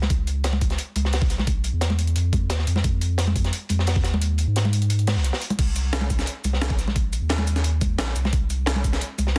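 A deep, round sine sub bass opens this lush, melancholic liquid drum and bass excerpt, sitting up front with a fast attack and long sustain, alongside a crunchy breakbeat kit whose dark, smooth hi-hats and medium-tuned snare carry a rolled-off top and a small-room feel. Close, dry congas played with hard hands add a warm, acoustic pulse from the very start. A moment later a sampler-style breakbeat kit joins with a gritty, compressed sound, bringing crash cymbal, hi-hat, shaker and a high-tuned snare set in studio reverb. An overdriven, layered electronic kick knocks hard in the foreground, then drops out from 4.2 to 5.6 seconds before returning. The stacked breaks give the straight groove a busy, textured drive under the mournful bass, all pressed into a dense, heavily limited modern master with a small-room ambience.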